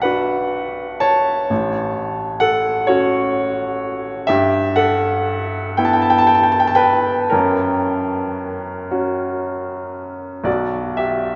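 This is a romantic classical nocturne for solo piano, mournful and yearning in mood, taken from a longer piece. A clear baby grand piano plays alone from 0.0 to 11.4 seconds, spanning A1 to A5 and sitting open and up front. The slow pulse moves in a 12/8 metre, pushed and pulled with rubato. The harmony moves through a chain of minor chords, reaches an F# major chord at 7.3 seconds, and settles back on B minor at 10.5 seconds. A long, wet cathedral reverb surrounds the instrument, giving the sound the resonant space of a church or concert hall with softened, rounded highs.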